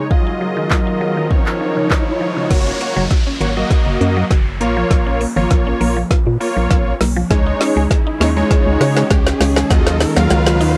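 Dance-pop with a carefree, upbeat mood, this short cut from a longer piece is built around a fat, detuned sawtooth polysynth up front, with a woody, round mallet-like pluck playing arpeggios through analog delay and a glassy, ethereal FM pad that drops out between 2.5 and 7.3 seconds, all pumping under sidechain and colored by cassette tape. A deep house drum kit with a deep kick, woody snare, smooth hats, claps, shaker and crash sits prominently throughout, while a hollow, organ-like FM bass enters at 2.5 seconds as a build-up and drum fill carry the rest of the piece. A riser and downlifter hover in the background, and the whole has the light reverb and homespun grain of a cassette home recording.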